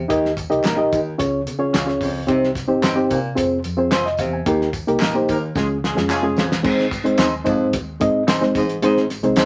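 Danceable and warm, this uptempo 1960s-style soul excerpt in Ab major moves at 110 BPM, with a reedy, slightly out-of-tune electric piano up front, a baritone saxophone riff with light vibrato, a round, punchy muted fingered bass, thuddy cloth-damped drums with a fat snare and dark cymbals, background tambourine and handclaps, dark semi-hollow guitar stabs with a warbly pitch drift, and a clear horn section in octaves adding a brief second line from 5.3 to 6.5 seconds, as a band accent and drum fill lead into the Ab chord at 6.6 seconds amid club reverb and vinyl crackle.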